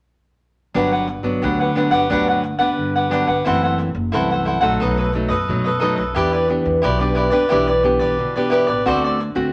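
Samba excerpt with a sunny, lively mood, where a bright, crisp picked cavaquinho and a fingerpicked classical nylon-string guitar sit up front over a woody, growly pizzicato upright bass, all playing together from 0.7 seconds through a Gmaj7, F#m7b5, B7, Em7 and D7 progression in a wet studio reverb.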